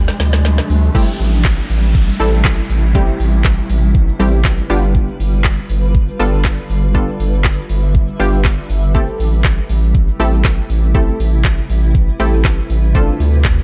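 A drum fill and an electronic riser open this confident, driving dance-pop cut in A minor at 120 BPM, over a cloudy, evolving granular pad and a deep, round analog bass, both pumping to the sidechain. At 0.9 seconds the track drops into a steady straight 4/4 groove. The smooth R&B kit sits up front with a knocking kick, woody snare, metallic hats, handclaps, shaker and crash. A punchy chord stab enters at the drop, its detuned sawtooth and pulse tones warbling through chorus with a vintage, filter-plucked snap, and it also pumps with the sidechain. The pad's slow-attack unison haze carries its own built-in reverb beneath the chords, which move from Am7 through G7 back to Am7 and Dm7, while the riser and downlifter end by 4.9 seconds. The overall production is dark and dry, with the bass and drums placed up front.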